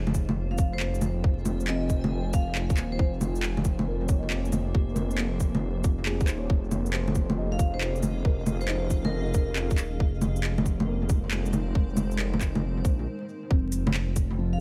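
A wistful, nocturnal future garage piece in F minor at 137 BPM, cut from a longer work, opens on a boxy, felt-muted upright piano in the background with tape echo, a blurred granular cloud pad and a menacing, saturated detuned saw bass, all three pumping against the sidechain. A tight, overdriven kick and a crisp kit of hi-hat, shaker, bongos and handclaps sit up front with a swung 16th-note feel over Fm7, Bbm7/F, Dbmaj9/F and Ab6/F. A bright, ringing vibraphone played with hard mallets adds short echoed phrases from 0.5 and 7.5 seconds, and a brief break at 13.1 seconds gives way to Fm, all within an echo-heavy mix dusted with vinyl crackle.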